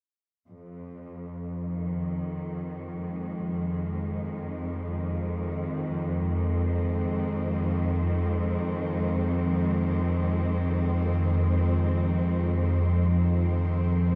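A huge, echoing reverb with a 7.5-second tail places this dark ambient drone in a vast, cavernous hall, giving it a desolate mood. Drifting in free time in F minor, tuned to A4 = 439 Hz, it holds a single Fm7 chord throughout this portion of a longer piece. A muted cello section enters at 0.5 s with sustained bowed chords, veiled and close-up, its vibrato sitting up front in the mix. At 1.0 s an analog drone eases in with a slow attack, its warbling sawtooth and pulse-wave tone thickened by chorus and a resonant, vintage glow. Both parts ring on until 14.2 s, the cellos' shadowed texture resting over the synth's evolving, mellow hum.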